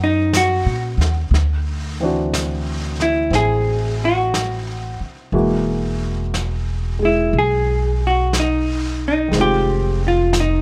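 Tender and late-night, this slow swung jazz ballad at 60 BPM features a dark, clean hollow-body electric guitar carrying the melody up front over an intimate baby grand piano with audible action noise, a woody, thumpy gut-string upright bass played pizzicato, and a brushed drum kit with a rolled-off top entering at 0.3 s, all captured with close, detailed microphones and little reverb as the harmony moves from Bmaj9 through D9 and Eadd9 to Fm7.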